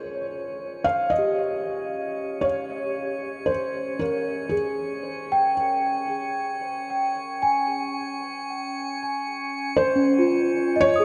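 Bathed in a vast cathedral reverb with a 6.3-second tail, this reflective, melancholic ambient passage at 56 BPM rests on a Db chord as an intimate, felt-muted upright piano carries the melody up front with audible action noise and delay, a delicate, bell-like celesta spins arpeggios through its own delay, and a glassy, bright harmonics texture with chorus slowly fades in beneath them across the full 11 seconds of this fragment cut from a longer piece.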